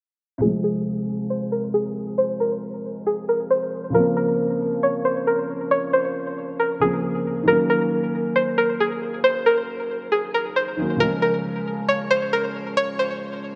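Hip hop in a brooding, menacing F phrygian, this half-time cut from a longer piece moves at 136 BPM, with a twangy, bright string-like resonator pluck carrying the melody up front through chorus, delay, a low-pass filter and a filter sweep, while a mellow, boxy dark grand piano with lush chorus and long sustain plays the accompaniment over Fm, Bbmadd9, Gb6 and Db, all soaked in a dreamy plate reverb with a 3.1-second tail.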